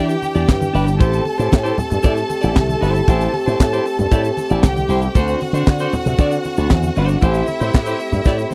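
Sultry and danceable, this short disco cut in A dorian moves at 116 BPM, with a tight funk drum kit up front, its high-tuned snare, tight kick, hi-hat and handclaps sitting alongside a punchy slap bass run through an envelope filter. A clean, picked electric guitar adds dark accompaniment while a lush, bowed string section plays an intense second line with vibrato, over distant, roomy French horn chords moving from Em7 and Am7 to D7 and back. Low-tuned congas and a grainy, saturated egg shaker sit in the background of the dry, close 1970s-style sound, and a drum fill arrives at 8.3 seconds.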